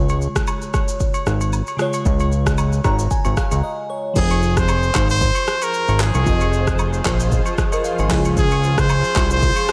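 A bright, punchy trumpet with vibrato, scooped notes and analog delay carries the melody from 4.2 s in this smooth, mellow afrobeats groove, riding over a fat, detuned analog bass, a layered deep house drum kit with a deep kick, handclaps, hi-hat, shaker, rim click and crash, close and dry agogo bells and woodblock, a crystalline FM electric piano with chorus and phaser that plays a fill ahead of a short break at 3.6 s, and a blurred granular cloud pad with ensemble chorus that drifts in behind at 5.6 s.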